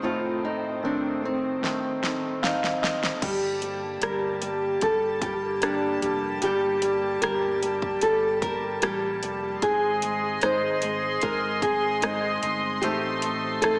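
A lush hall reverb gives this melancholic, longing pop ballad in G minor a big arena sound, though it also carries a small-speaker quality, moving at a straight 75 BPM in 4/4 in a fragment cut from a longer piece. A dark, small nylon-string guitar carries the melody with slapback and tape echo over a clear, polished concert grand piano, floating sul tasto strings, and a full-bodied fingerpicked steel-string guitar whose echoed arpeggios sit in the background. The punchy, layered pop kit enters at 1.6 seconds with a fill as the piano adds its own, and a round, amped fretless bass joins at 3.2 seconds when the harmony moves from A diminished to G minor add nine.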